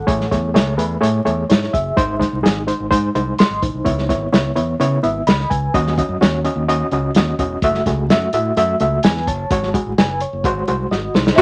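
Crackling vinyl sound with a dull top and a moderate studio room frames this passionate, urgent snippet of uptempo 1960s-style soul at 127 BPM, where a gritty, reedy overdriven electric piano with tremolo sits up front over a bright fingered electric bass and a dry, muffled drum kit through chords moving from Amaj7 to G#7, until a drum fill from 10.9 s leads at 11.4 s to the entrance of a mellow saxophone section, a dark, lush bowed string section, very quiet ringing congas and a distant, jingly tambourine.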